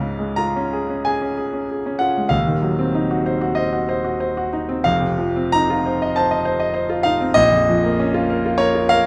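A bright concert grand piano, brilliant up top and deep in the bass, opens this stormy, passionate excerpt of a romantic solo character piece in Bb minor, moving with rubato at 76-104 BPM through Db, a diminished chord and F7 before arriving on Bb minor at 7.4 seconds, captured up close in fine detail within a moderate recital hall reverb.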